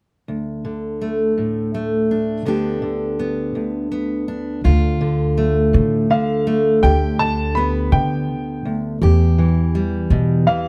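Lightly reverberant and intimate, this reflective, melancholic acoustic folk excerpt in D dorian moves at a slow 55 BPM in 6/8, opening with an up-front, full-bodied fingerpicked dreadnought guitar at 0.3 seconds, joined at 4.6 seconds by a dark, woody pizzicato upright bass and at 6.1 seconds by a clear, smooth, vintage-toned upright piano melody high in its range, bathed in plate reverb.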